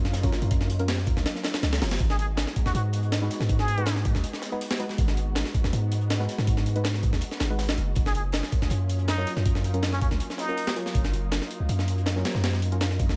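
This atmospheric, nostalgic drum and bass excerpt in a jungle vein opens with a silky string machine holding soft chords in the background and a deep, sine-like 808-style bass sitting up front, both starting at 0.0 s over an F#maj7 that moves to G#m7 at 2.0 s and back at 8.0 s. At 161 BPM in a straight 4/4, a compressed, sampler-style breakbeat kit drives the groove with a thumpy kick and high-tuned snare, shadowed by a very quiet second kit whose saturated, rolled-off hi-hat and snare add dark grit beneath. Deep, nasal chord stabs with a filter pluck drift in the background, trailed by chorus and dub echo. A brief, very quiet reverse cymbal appears at 1.7 s before a plunger-muted trumpet enters at 2.1 s, playing jazz-style phrases with wah-wah, vibrato and scooped notes, its brilliant tone carried off by dub echo and returning from 8.1 s. Small room ambience wraps the whole in the sound of a small space.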